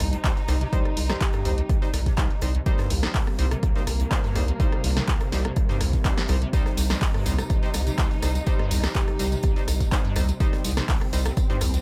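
A dark symphonic string section holds sustained, vibrato-laden C minor chords over a round, deep analog bass and a squelchy, resonant acid bass riff with overdrive, chorus and 12-bit sampler grit, all three pumping under sidechain, in this trippy, driving acid house excerpt at 124 BPM. A punchy, up-front electronic kick and a tape-flavoured analog drum machine of handclaps, hi-hat, rim click and snare set the straight 4/4 pulse. A very quiet gated 80s kit and a nasal band-passed chord stab with chorus and analog delay enter almost at once, and a jingly tambourine joins from 6.5 s. A breathy, flute-like synth lead with chorus and delay touches a brief G4 at 1.1 s and again at 8.8 s, all in light reverb.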